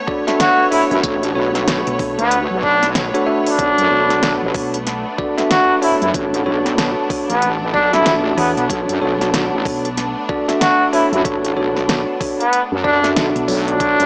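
Gritty and funky, this short cut from a longer glitch hop piece moves at 94 BPM in 4/4 with a swung sixteenth-note feel, sitting on a Bm9 chord in B minor throughout. A clear, lush studio string section holds sustained chords from the very start, while a bell-like tine electric piano adds bright, clean stabs, both pumping under sidechain compression. Drums arrive almost at once, pairing a knocking electronic kick with a pop kit's fat snare and crisp hi-hats, both layered and tape-warm. Up front, a mellow trumpet carries the melody in a classical style from 0.4 seconds, its distant, roomy tone trailed by analog delay. Low end comes from a heavy, saturated wobble bass with chorus entering at 0.9 seconds, joined at 1.9 seconds by a round, punchy hollow-body electric bass played with the fingers. The whole mix has a dry, gritty cassette and small-speaker character with only light reverb.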